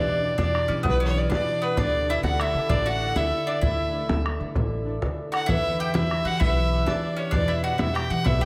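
A bright, cheerful Celtic slide in a straight 12/8 lilt, this short cut from a longer piece moves from Em7 to Dsus2 and back to Em7. An up-front bowed fiddle carries the melody with a biting tone, light vibrato and tape echo, while a picked bowl-back mandolin adds a second line on its double strings over ringing, fingerpicked concert harp and woody, growly pizzicato upright bass. A damped, tight bodhran with a vintage, band-limited sound joins at 0.1 s, and a lush hall reverb soaks the mix in a dreamy glow.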